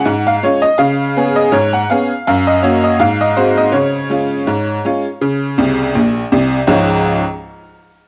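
Lightly swung sixteenths at 82 BPM in 2/4 drive this playful, jaunty ragtime fragment in Db major, where a solo tack piano with a metallic, jangly, percussive, vintage and boxy tone sits up front, moves from Db through Gb and Ab7 back to Db, adds a honky-tonk fill from 5.6 to 6.7 seconds and stops at 7.2 seconds, heard through moderate spring reverb, a small room ambience and the texture of a home cassette recording.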